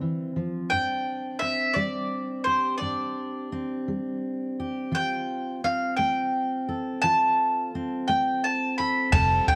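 A slow, straight 6/8 lilt carries this short, nostalgic yet anthemic indie folk excerpt, opening with a full-bodied jumbo steel-string guitar fingerpicked up front over F5, Gsus4 and F chords. A woody, double-strung mandolin takes the melody from 0.7 s, sitting forward in a light reverb and small-room ambience. At 9.1 s the arrangement starts to build as a boxy old ladder-braced acoustic guitar, a round, foam-muted fingered electric bass and a dry compact cocktail kit with a tight kick and dark ride cymbal join in briefly.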